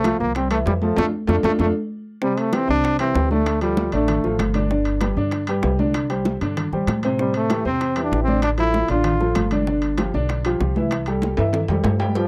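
Festive and sunny, this salsa excerpt moves at 193 BPM in a straight 4/4, cut from a longer piece and captured in a dry, close studio sound with the flavour of the 1970s and a touch of light reverb. A bright, punchy trombone carries the melody up front with light vibrato and a smooth top, playing in two phrases and resting between about 4.4 and 7.2 seconds. Beneath it, a worn baby grand piano keeps up the accompaniment, while a woody, thumpy upright bass with steel strings anchors the low end. The percussion blends high-tuned, ringing congas set in the background, metal-shell timbales with a vintage, band-limited ring, and round, low-tuned bongos and cowbell struck with hard hands. A band accent and a drum fill mark the opening bars, the harmony travels from C through Dm, Am7 and G7 before settling on C6, and a closing fill leads to a brief, clear, close-miked trombone section entering at 12.2 seconds.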